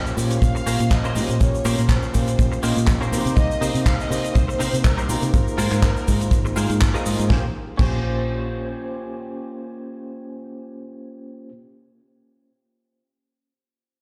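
Nu-disco at 122 BPM in Bb dorian with a light swing, sleek and sensual and cut from a longer piece, where a smooth bowed violin section carries the melody through digital delay until 6.8 seconds over a barky, gritty tine electric piano with medium tremolo, a round, foam-muted fingered bass pumping against a tight, dry kick, a damped 70s kit with fat snare, dark cymbals, handclaps, hi-hat and shaker, a very quiet cabasa, and a bright, twangy clean guitar riff with ensemble chorus that carries on with the piano to 11.5 seconds, the whole mix heard in a small room with large studio reverb.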